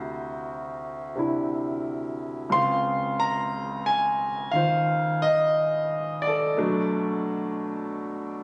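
A concert grand piano plays alone, up front and natural with a deep bass, in this cool, smoky solo jazz fragment at a slow 59 BPM in swung 4/4, moving from D9 to C#maj7 and then to Bm7 at 6.6 seconds, tuned to A4 = 439 Hz and caught on a phone in a club room with moderate reverb.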